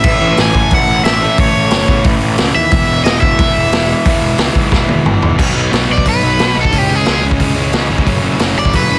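A fast, energetic punk rock cut in E major opens with the full band at once, driven at 180 BPM in a straight 4/4 with a rebellious edge. Up front, a crunchy, bright guitar carries the melody high in its range, while a second overdriven guitar plays a riff in the background and another overdriven electric guitar adds a lower riff behind it. Underneath, a fuzz-soaked picked bass growls through the low end, and a raw garage drum kit sits prominently in a small room, with a boomy kick, a medium-tuned snare, hi-hat, toms and crash cymbal, all saturated and gritty with a rolled-off top. A drum fill at 4.7 seconds launches the second section at 5.4 seconds, where the overdriven electric guitar takes a solo over a shift from the A and E chords to B, C#m and F#m. The mix is dense and heavily limited, with very little reverb, and the excerpt cuts off at 9.0 seconds as part of a longer piece.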